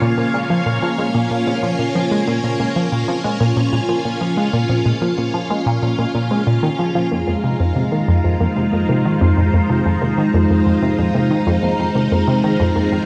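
A tight, nasal sequenced synth riff drives this hypnotic, expansive stretch of ambient space music at 93 BPM in Bb minor, up front with chorus and tape echo beside lush, vintage string-machine chords swirling with phaser and ensemble chorus, while a very quiet, round, dark pluck arpeggiates and a bright, bubbling, resonant filter texture sits in the background, all washed in a wet plate reverb with a cassette-tape character as the harmony moves from Bbm to Fm7 at 7.1 seconds.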